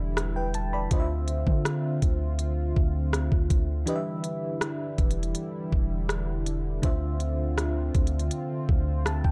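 Dark, dry production frames this late-night, longing contemporary R&B piece at 81 BPM in D dorian, where a mellow FM electric piano with tremolo and a shimmering, chorused pulse-width pad with sidechain pumping hold Em7 and Dm7 chords over a deep, sine-toned 808-style bass, while an up-front, tape-warm electronic drum kit of knocking kick, smooth hi-hat and rim click enters at 0.2 seconds; a break arrives at 3.9 seconds, and an electric piano fill closes the excerpt at 8.7 seconds.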